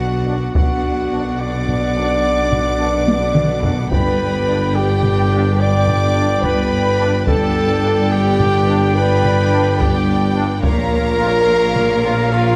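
Heroic and relentless, this cinematic orchestral excerpt in 12/8 sets lush, vibrato-rich violins carrying the melody over a distant second violin line, a very quiet viola accompaniment, dark horns and close-miked woodwinds holding sustained chords, a very quiet, vintage-toned trombone section, and clear, roomy trumpet stabs. Cellos, double basses and a mellow tuba anchor the bass, while a heavy-stick taiko ensemble with a compressed, saturated punch enters at 0.6 seconds and breaks into a fill at 3.1 seconds. The harmony moves from Bm to G and then to Bbm, all set in a moderate scoring-stage reverb.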